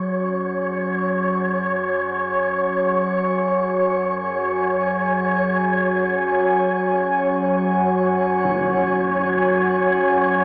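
In free time, this dark ambient drone feels ominous and unsettling, as though cut from a longer piece. An analog drone sits up front from the very start, its nasal, evolving sawtooth and pulse-wave tone shaded by pulse-width modulation, a moving notch and chorus, holding low around an F#5 chord. Above it, a deep, moody pad of detuned unison sawtooths with a sub octave, wave-folding and ring modulation sustains chords, softened by chorus, its own reverb and a shimmer reverb. A breathy, wind-like tuned noise texture hovers up front on a single high note, airy and dark, bathed in its own reverb and shimmer. At 8.5 seconds a huge, bright impact sounds very quietly, and the whole mix sits in a vast, wet reverb with an AM-radio colour.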